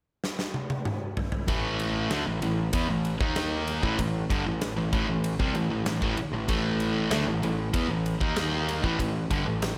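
This anthemic, powerful hard rock passage at 96 BPM in 4/4 opens with a drum fill on a huge arena kit at 0.2 seconds, its punchy kick, medium-tuned snare, toms and sparkling ride cymbal sitting up front in a hall-like space. At 1.5 seconds the full band enters: a high-gain distorted guitar plays a riff up front while a sludgy, overdriven second guitar plays a riff across the same range further back, adding a warm thickness beneath it. A modern picked electric bass supplies a growly, direct low end. The riff centres on A5, with brief shifts to D#5 before settling back, giving the section a heavy, driving weight. A moderate large-studio reverb blended with a small-room ambience lends the sound size and depth until the guitars and bass stop at 9.7 seconds and the drums at 9.8 seconds, in a passage cut from a longer piece.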